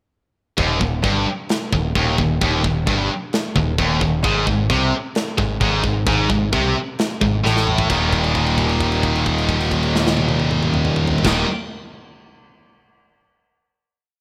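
A heavy high-gain guitar riff stands up front in this short, dark heavy metal piece at 132 BPM in Eb major, alongside a quieter second high-gain guitar, a sludgy overdriven double-tracked guitar, a growling bass driving eighth notes that double the riff, and a tight, gritty metal drum kit with bright cymbals playing a half-time groove, all moving from Eb to Ab before a drum fill at 7.4 seconds leads into a final Eb chord held to the end in a rough, small-room demo sound.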